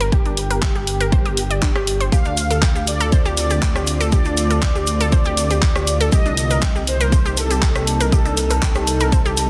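The dark detuned saw bass sits up front in this progressive house excerpt at 120 BPM, its deep, rumbling sawtooth tone beating beneath a punchy electronic kick drum that joins at 0.1 s and carries the most weight in the mix. The mood is emotional and bittersweet, with a smooth, expressive synth lead singing the melody through ensemble chorus, vibrato, filter sweeps and dub echo, while a lush, full-bodied unison pluck spins arpeggios through digital delay. A house drum kit of handclaps, hi-hat and rim click adds tape-tinged, layered texture, with soft clipping on the snare, and a grainy, bright tube shaker enters at 2.1 s in the background as the harmony moves to Dm7. From 3.0 s an evolving, morphing wavetable pad swells in gently behind the others with chorus and its own reverb, and the chords shift to Cm7 at 6.1 s. Sidechain pumping breathes through the lead, pluck, bass and pad, and the whole is set in light reverb with a dense, heavily limited modern master.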